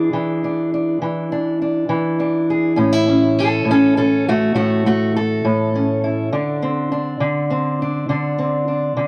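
A dark, boxy fingerpicked parlour steel-string guitar sits up front with a touch of tape echo, carrying this rollicking yet laid-back acoustic country blues in a relaxed 12/8 at 68 BPM. Cut from a longer piece, it opens on E7 before the guitar takes a solo from 2.8 seconds, moving to A and then settling onto D5 at 6.3 seconds. The sound has a cassette-tape character and a snug, reverberant small-room ambience.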